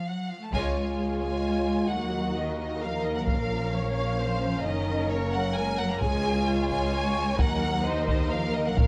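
This epic, relentless orchestral film cue in 3/4, cut from a longer piece, opens with a rich, close violin section carrying the melody over warm, bowed cellos. From 0.5 s a background second violin line, distant mellow French horns holding sustained chords, a bright, up-front double bass section and hard-stick taiko drums join in, followed by dark violas in accompaniment at 1.0 s and a very quiet, hard-mallet timpani stroke at 8.8 s. The second violins, violas, cellos and basses sound lush with vibrato inside a moderate scoring-stage reverb, and the recording has the worn character of old cassette tape with a warbly pitch drift.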